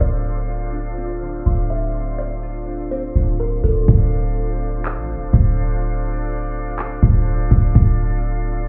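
This atmospheric cloud-rap excerpt in D minor moves at 124 BPM with a half-time feel, its spacious, ethereal mood resting on a Dm7 chord and heard as if muffled through a wall with club reverb. A breathy, mellow small flute group holds sustained chords throughout, pumping against the sidechain under a low-pass filter, while a deep, boomy, clean 808-style bass sits up front with a fast attack and dark decay. For the first 3.9 seconds, a woody, hollow-sounding kalimba plucks a short melody through tape echo, joined by glassy, detuned digital keys playing chorused arpeggios as a filter sweep unfolds. Beneath them, a dark, wind-like tuned noise texture breathes softly in the background with its own built-in reverb. At 3.9 seconds the kalimba and keys drop away and a smooth R&B drum kit arrives, with a soft kick, metallic hi-hats and handclaps carrying a tape-tinged electronic polish until 8.3 seconds.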